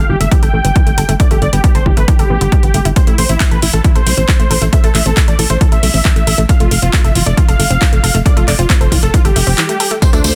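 Soaring and euphoric, this short excerpt of uplifting trance drives along at 136 BPM in a straight 4/4, moving through G, Am and F. A huge, thick supersaw carries the melody, its detuned sawtooth layers compressed and sustained with vibrato, softened by a low-pass filter and trailed by tape echo, all breathing with sidechain pumping. Beneath it, a nasal analog pluck spins arpeggios in the background, bright and chorused with dub echo. A solid, round FM bass with a fast attack and mellow decay anchors the low end. The techno drum kit arrives at 0.2 s with handclaps, rim click, tambourine and metallic hi-hats, and a punchy electronic kick sits up front from 0.3 s. After a brief break, a lush, detuned unison pad with chorus and phaser enters at 10.0 s, all within a dense, heavily limited modern master and digital ambience.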